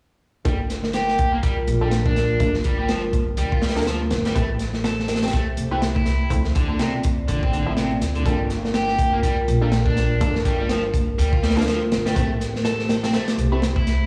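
Breakbeat in a funky, energetic mood, this 14-second cut from a longer piece moves at 123 BPM in G dorian with a swung sixteenth-note feel. Up front, a crunchy, saturated breakbeat kit with a tight kick and medium-tuned snare drives everything from 0.5 seconds, its top end rolled off, while bright, high-tuned congas struck with hard hands sit distant in a large room behind it. A woody, thumpy upright bass on gut strings plays pizzicato in the low register, and a bright, overdriven electric guitar picks a riff through a low-pass filter and dub echo. Further back, muted sawtooth chord stabs with fast attack and short decay carry 12-bit sampler grit, chorus and dub echo, and a moody, detuned analog pad enters at 0.9 seconds with slow-attack sustained chords, phaser, chorus and sidechain pumping. The harmony cycles through Gm7, Am7 and Dm7, and the whole mix sounds played on a big system in a bare room with large studio reverb.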